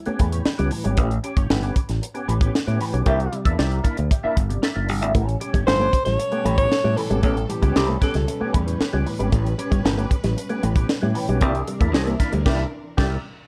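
A dark, lightly reverberant mix frames this energetic funk excerpt at 115 BPM in A mixolydian, with a tight, dry drum kit and a growly fingered bass up front, a clean, twangy wah guitar with ensemble chorus and a fat, lightly overdriven tonewheel organ stabbing through slow rotary swirl. A bright envelope-filtered guitar riff sits in the background and returns at 5.2 s, while a breathy, scooping alto saxophone carries the melody and lush bowed strings settle in beneath from 5.1 s. Band accents land on a C9 chord at 3.1 and 11.4 s, where a raspy, growling tenor saxophone with tape echo adds a distant second line.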